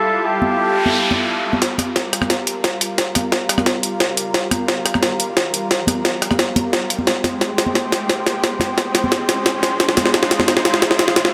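Rolling and lush, this liquid drum and bass excerpt moves at 176 BPM in a straight 4/4, centred on G phrygian and tuned slightly low to A4 = 439 Hz. It opens on an Fmaj9 chord with a brief, breathy flugelhorn melody between G4 and A4, jazz-styled with light vibrato and scooped notes, trailed by digital delay and gone by 1.3 seconds. Beneath it, a thick, detuned unison pad of sawtooth and square waves holds sustained chords from G3 to C5 throughout, its slow attack and long release shimmering with chorus and pumping against the sidechain. Soft-handed, ringing congas arrive at 0.4 seconds, and an electronic noise sweep plays in the background before the drums land at 1.6 seconds on Gm7, where a build-up, a riser, a drum fill and a filter sweep on the analog synth pad all run to the end. The gritty, pitched-up jungle sampler-style kit sits up front with hi-hat, rim click and a high-tuned, compressed snare, while a tight, layered electronic kick with a high-pass filter stays in the background, both bathed in studio reverb. 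The harmony shifts to Abmaj7 at 7.1 seconds, and a huge ambient reverb with a long 7.1-second tail washes over the whole mix.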